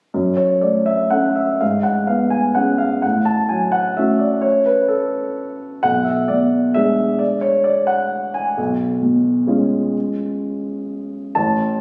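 A lilting waltz in three with a flexible, rubato feel opens this short classical excerpt cut from a longer piece, its mood bittersweet and wistful. A solo grand piano carries everything from 0.1 to 11.8 seconds, sitting up front with a warm, short-sustained tone across a range from low bass to the upper treble, moving through minor and diminished harmonies toward a dominant seventh. The sound carries a moderate recital-hall reverb and a compressed quality, as if captured on a phone from within the room.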